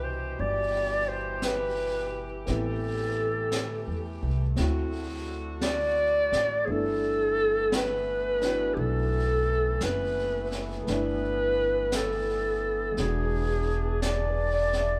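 Jazz ballad at 57 BPM in a tender, late-night swing, where a breathy, up-front clarinet sings the melody with vibrato and scooped notes over a woody pizzicato upright bass, a warm grand piano with short sustain in the background, distant mellow saxophone-section chords, and a roomy brush kit with a high-tuned snare entering at 0.4 seconds, all moving through Cmaj7, Am7 and D7 to G69 before an E7 at 13.0 seconds in a live-room take cut from a longer piece.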